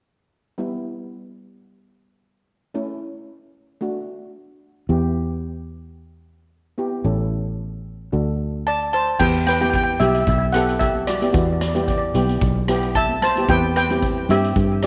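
This moody, cool calypso moves at 112 BPM in 4/4 with a light sixteenth-note swing, set in E minor and cut from a longer piece. A double-seconds steel pan struck with hard rubber sticks opens at 0.6 seconds with bright, shimmering accompaniment, close and dry, over a cycle of Em, A and D. A fingered electric bass joins at 4.9 seconds, round and dark with a foam-muted, amped tone sitting up front. At 8.7 seconds a second steel pan takes the melody, played with soft rubber sticks for a mellow, gentle sound touched by tape echo. Moments later a street-band drum kit arrives with crash, hi-hat, boomy kick and rim click in an airy, polished big-room sound, while very quiet, high-tuned congas with soft hands sit distant in a large room. The harmony stays on Em before settling onto Cmaj7/E near the close, and the whole mix carries a moderate echo-chamber reverb.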